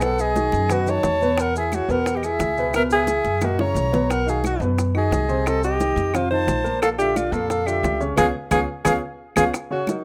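Fiery and sultry, this fragment of a longer Afro-Cuban jazz piece moves at a brisk 176 BPM in a straight 4/4. An alto saxophone carries the melody up front, close-miked and singing with vibrato, its tone treated with slapback echo and a plate reverb. Above it, a breathy, bright flute with a crisp, chiffy attack and straight tone adds a second line, while a baby grand piano with a natural, short-sustained sound supplies accompaniment through changes such as B9, E6, C#m7 and F#7. A woody pizzicato upright bass on steel strings anchors the low end, and the bass and flute both stop at 9.5 seconds. The percussion bed pairs round, low-tuned bongos with high-tuned, damped congas and grainy maracas, while woody claves sit in the background, with drum fills at 3.4 and 8.2 seconds and a band accent closing the passage. It all sits in a moderate small room with a rough, home-demo character.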